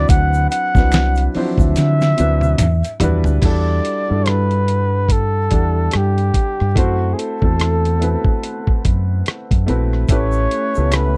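A 72 BPM swung groove in 4/4 carries this soulful, introspective neo-soul excerpt in E minor, where a breathy, vibrato-laden flugelhorn sings the melody with slapback echo over a woody upright piano, a round, dark fingered electric bass and a gritty, tape-warm sampler-style drum kit with a thumpy kick and fat snare that plays a fill from 1.8 to 3.4 seconds, while a tube shaker and finger snaps sit in the background and a lush, detuned unison pad slips in very quietly at 10.1 seconds, all captured in a dry, close 1970s-style studio sound.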